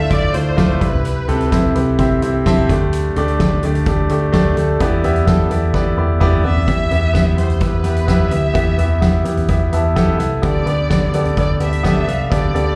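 Piano-driven pop at 128 BPM with an earnest, dramatic mood, heard as a live gig through the venue's PA with moderate club reverb, and cut from a longer piece. An up-front, clear concert grand with long sustain and audible action noise carries the accompaniment and adds fills, while a round, dark muted electric bass and a distant, roomy soft-mallet kit with a fat snare and boomy kick hold the groove, the kit joining the piano for a fill at 5.7 seconds. A lush bowed violin section, full of vibrato and portamento, voices the melody briefly at the start and returns at 6.5 seconds as the harmony moves from Dmadd9 through Em toward Gadd9.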